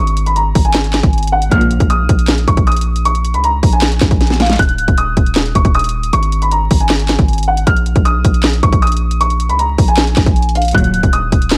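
A dark, boxy grand piano melody with a low-pass filter opens this menacing half-time trap excerpt over vinyl crackle and a punchy, heavy 808-style bass, joined almost at once by an up-front electronic kit of hard-clipped kick, sharp snare, handclaps and tape-warm hi-hats that plays a fill at 4.2 seconds, while a muted, veiled string section bows brief, lush stabs at 1.5 and 10.7 seconds, set in a studio reverb.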